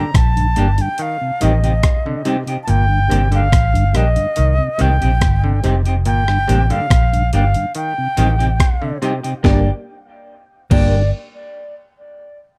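A breathy, bright concert flute carries the melody in this serious, laid-back roots reggae excerpt, its reedy tone set in plate reverb and dub echo. Up front, a dark, round muted electric bass and a gritty, compressed breakbeat kit with a thumpy kick and high-tuned snare anchor the groove. Underneath, a mellow tonewheel organ turns through a slow rotary speaker, a clean semi-hollow electric guitar sits in plate reverb, and an overdriven clav plays stringy arpeggios over alternating Gm and Cm chords, all within a light reverb and a cassette-tape sound.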